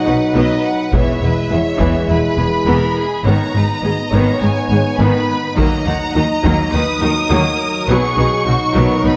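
Dark and dramatic, this short cut from a longer piece is an epic orchestral film score moving at 103 BPM in a straight 4/4, set in Eb phrygian with chords shifting from B through E, Abm and Ebm before returning to B. A lush violin section carries the melody with smooth vibrato and a distant quality, while a second violin line sits beneath it with an even, silky top. Bowed violas add an expressive accompaniment marked by portamento, and a French horn section holds sustained chords with a tight, classical-style tone and light vibrato. Cellos rest in the background alongside a focused, clear double bass section, together anchoring the low end. Heavy-stick taiko drums, compressed and saturated, strike in two bursts around 0.9 and 5.6 seconds, all set within a spacious scoring-stage reverb.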